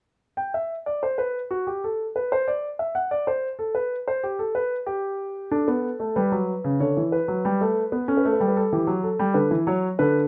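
A straight 4/4 pulse drives this brief, baroque-style two-part invention, a classical piece heard as a cut from a longer work. A solo concert grand piano carries everything from 0.4 to 10.3 seconds, its lines spanning from C#3 up to G5, with a deep bass and an up-front presence. The mood is lively and elegant. The opening passage moves free of any chord, and harmony only settles later on a rootless D, passing through Em7/D and A7 before coming home to D. The piano's tone is warm, set in light reverb that lends a touch of air around the instrument.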